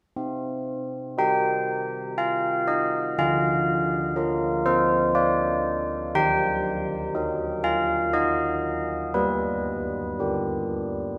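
A solo carillon rings out at 0.2 s with a classical church-bell tune in C minor at 60 BPM in an unhurried 3/4. It plays up front, ranges from D3 to G5, and is tuned to A4 = 435 Hz. Its bronze tone carries a minor-third overtone, softened and made mellow by a padded clapper, as it moves through Cm, Bb/D, Eb and G in a solemn, wintry passage cut from a longer piece, with a long cathedral reverb of 4.9 s lingering around every stroke.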